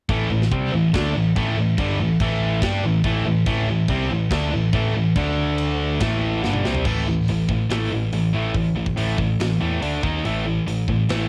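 Anthemic and powerful, this short hard rock clip, cut from a longer piece, drives along at 142 BPM in a straight 4/4, with a cranked stack guitar and a high-gain distorted guitar playing bright, picked riffs over power chords centred on A5, moving to D5 and briefly D#5. An overdriven picked bass adds a growly, punchy low end, while a tight metal drum kit with bright cymbals, a medium-tuned snare and toms plays throughout, its fill at 6.4 to 6.9 seconds leading into a new section. The whole take has the grainy character of a home recording on cassette, with light reverb and an airy, big-room sound on the drums.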